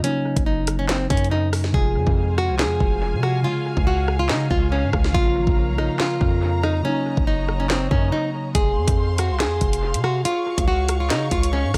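A fingerpicked nylon-string guitar carries the melody up front through analog delay in this dark, ominous half-time drill excerpt, set over soft, muted felt-like synth keys with chorus that stop at 8.6 seconds, an electronic drum kit with a knocking kick, sharp snare and bright hats whose hi-hats drop out from 1.7 to 8.5 seconds, a punchy, saturated 808-style bass, and lush, woody bowed strings joining at 1.7 seconds, in an echo-heavy digital ambience.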